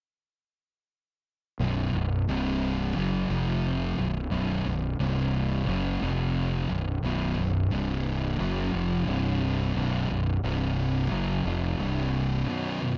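Metal with a hypnotic, brooding pull, where two thick fuzz guitars, one warm and up front, the other dark, grind out a distorted riff from 1.6 seconds alongside a growly, overdriven fingered electric bass, before a lush, vintage string machine with phaser and ensemble chorus drifts in behind them at 12.5 seconds, all in a dry, close 1970s-style studio sound.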